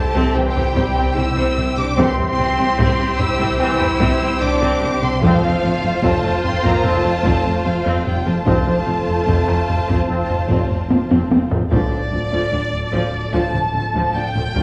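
A straight 4/4 pulse drives this relentless, futuristic stretch of hybrid orchestral and electronic film score, cut from a longer piece, with a taiko ensemble struck with heavy sticks pounding in the background through a vintage, band-limited tone. Lush bowed violin sections carry the melody and a vibrato-rich second line, while a soft-attack viola section glides with portamento beneath them, and quiet cello and double bass sections thicken the low strings. Distant horns with a dark colour and a roomy trombone section hold sustained chords behind the strings, as a smooth sawtooth-and-triangle synth bass plays its riff over a deep, saturated sine sub bass. The harmony moves from C to F, and after a drum fill from 10.9 to 11.7 seconds it settles on D minor as a single distant violin enters at 11.7 seconds, its smooth, even line trailed by tape echo. The whole mix sits in a moderate scoring-stage reverb and carries the worn, warbling pitch drift of old cassette tape, giving the grand orchestra a faded, haunted cast.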